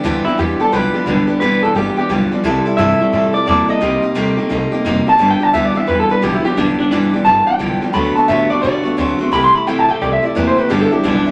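A moderate studio reverb gives this short rockabilly clip a retro and rollicking sound, swinging at 174 BPM in G major over chords such as G6, C6, Cm7 and D6. An up-front, twangy electric guitar through a small old amp plays the solo melody from 0.2 s, while a second electric guitar through a small old amp, slightly broken-up and sitting in the background, plays a riff. A bright, full-bodied jumbo acoustic guitar provides picked accompaniment, and a woody, thumpy upright bass with dark gut strings anchors the bottom.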